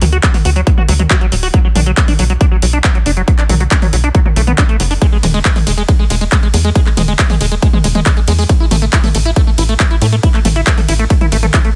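In a digital ambience, this uplifting, euphoric trance excerpt at 138 BPM in 4/4 pairs a nasal, sawtooth sequencer bass with a squelchy, resonant acid line playing bright arpeggios through analog chorus and dub echo, both pumping with sidechain, while an overdriven electronic kick sits punchy and up front from 0.2 s and an overdriven dance kit of handclaps, hi-hat, ride cymbal and toms fills a small room over chords moving from D to Bm, E and A5.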